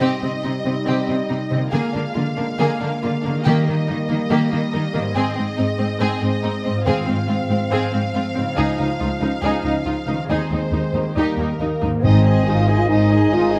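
In a straight 4/4 feel, this soaring, adventurous cinematic passage builds steadily, with a lush violin melody and softer background violins floating over bowed violas, distant mellow French horn chords, a very quiet ringing harp, and expressive cellos with portamento, all in light reverb, as round soft-mallet timpani strokes punctuate the climb before a clear solo clarinet, hollow flutes, faint trombones and deep double basses join at 12.0 seconds.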